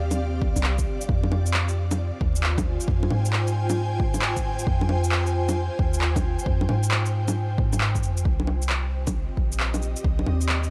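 A swung 16th-note groove in 4/4 drives this melancholic, rainy future garage excerpt, with overdriven electronic bongos, shaker and handclaps sitting up front beside a punchy, layered kick. An ethereal, detuned pad holds slow-attack chords that shift from Cm to Fm7 before settling on Cm7 at 8.3 s, shimmering with chorus, tremolo and reverb. A soft, round 808-style bass pumps beneath it, and a bed of vinyl crackle hangs over the whole mix.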